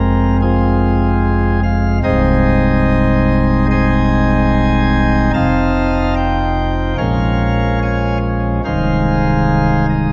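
A solo pipe organ, its sparkling, light flute stops in a baroque voicing set up front, carries this reverent, serene classical chorale-style passage cut from a longer piece. Spanning C1 to A5 over a straight 4/4 feel, it moves through Fm, Ab/C, F7 and Bbm7 before returning to Ab/C at 8.6 seconds. A wet church reverb with a 2.8-second decay surrounds the bright pipes within a dark overall production.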